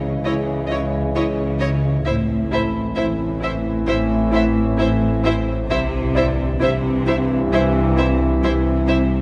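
A mysterious, ominous cinematic suspense cue opens at 0.0 s with sustained chords from a clear trombone section and a dark, soft-attack French horn section over lush bowed cellos, background double basses and a detuned, evolving analog drone with chorus, while a ringing, thumb-plucked harp adds very quiet texture; violas and a second violin line join at 0.2 s, and a focused chamber violin section carries the melody from 0.3 s, set in a moderate concert-hall reverb.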